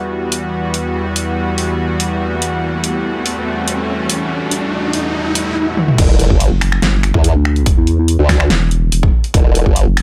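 A lush, detuned supersaw pad opens this chaotic, menacing stretch of heavy wobble dubstep, holding sustained chords with a sidechain pump while a layered big-room dance kit with a huge snare, finger snaps, hi-hat, toms and crash builds tension in a half-time feel. An electronic riser enters at 2.5 seconds, and a drum fill leads into the drop at 6.0 seconds, where the pad gives way and an impact hits. A punchy, tape-toned electronic kick arrives with the drop, alongside a saturated, up-front wobble bass that sweeps through a formant filter with chorus and overdrive. At 6.5 seconds a second wobble bass joins, darker and nasal, its resonant vowel-like sweep sharing the low register with the same chorus and overdrive. The mix is dry, and the passage is cut from a longer piece.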